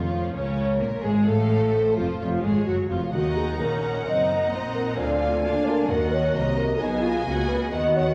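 Restless and urgent, this quick classical-period orchestral passage at 130 BPM in 4/4 moves with a rubato feel through minor-leaning harmony that opens on Bb minor. Two violin sections share the upper lines, one with a focused melody and the other carrying a lush, smooth-topped second line, over bowed viola accompaniment, mellow sustained French horn chords, and an even bass from cellos in the background and double basses. Very quiet timpani on calf heads sound at 0.0 and again at 3.1 seconds, and the whole is set in a wet concert-hall reverb with a worn, warbling cassette-tape pitch drift.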